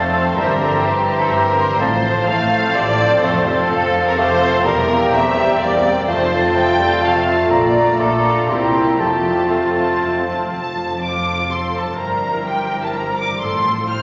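Classical orchestral music in 3/4 at 125 BPM in F major, taken from a longer piece, moves with a rubato feel and a stormy, dramatic mood. A symphonic violin section carries the melody high in its range with vibrato and a focused, lush tone, while a second violin section, rich and distant, sings a lower line beneath it. Woodwinds add further lines until about 10.3 seconds: a clear oboe stands out as the most prominent voice, joined by a very quiet clarinet and an airy, mellow flute. In the background, a vintage-toned bassoon and a viola section with expressive portamento supply accompaniment, a French horn section holds tight sustained chords from 0.4 to 10.2 seconds, and a fingerpicked concert harp rings out arpeggios. Cellos and double basses anchor the bass with soft-attack bowing, underpinning a progression that turns on C7 and F with a Bbmaj7 along the way. The whole ensemble sits in a wet scoring-stage reverb that lends a spacious, darkened sheen, and only the strings and harp continue to the end at 14.0 seconds.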